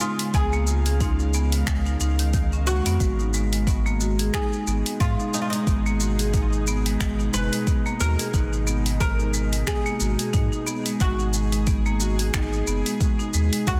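A swung 90 BPM groove in 4/4 from an electronic deep house kit of finger snaps, hi-hat and shaker, with soft clipping on the snare, is joined at 0.3 seconds by a deep electronic kick and a round, up-front sub bass, setting a hypnotic, earthy organic downtempo mood in G# dorian, cut from a longer piece. Over this, a woody, plectrum-plucked oud carries the melody through tape echo, while a dark marimba struck with hard mallets plays arpeggios with delay. A tense, string-like bowed drone holds sustained chords with vibrato, built-in reverb and sidechain pumping, moving from C# to G# minor at 3.0 seconds in a dense, heavily limited master.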